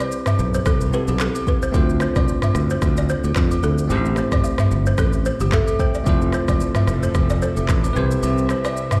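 Sunny and breezy, this afrobeats excerpt moves at 111 BPM in C major with a lightly swung sixteenth feel, as an electronic, produced drum kit with a deep kick, handclaps, rim click, shaker and toms sits up front beside close, dry agogo bells and woodblock. A bell-like, clean tine electric piano plays chords through Cmaj7, Dm7, Am7 and Fmaj7, with a fill at 5.3 seconds. A woody, buzzing balafon riff with delay plays alongside it, and a growly, punchy fingered electric bass enters at 0.4 seconds. At 6.1 seconds an airy, breathy pad with chorus enters softly in the background, all heard as if played on a big sound system in a bare room.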